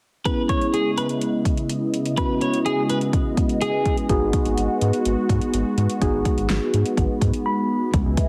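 Synth-pop in a cool, melancholic mood, this excerpt rides a deep house drum kit with a deep kick, fat snare and metallic hats placed up front, alongside a swirling, detuned analog pad coloured by phaser and chorus and a worn, slightly out-of-tune tine electric piano with lush chorus, the harmony moving from C#m7 to G#m7 under a filter sweep. A clean, picked twelve-string electric guitar with slapback echo carries a second line until 4.0 s, and a round, dark analog bass with a fast attack enters at 4.1 s, before the electric piano adds a short fill at 7.2 s. The whole mix has a heavily compressed, radio-like sound set in a moderate plate reverb.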